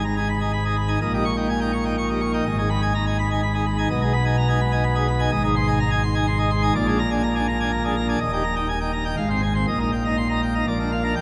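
A full pipe organ plenum, brilliant with mixtures, baroque voicing and a touch of chiff, sits up front as the sole voice in this majestic, dramatic classical toccata excerpt at 125 BPM in 3/4, spanning Eb1 to C#6 and moving from G# minor to Eb major at 5.3 seconds, all bathed in a long, wet cathedral reverb.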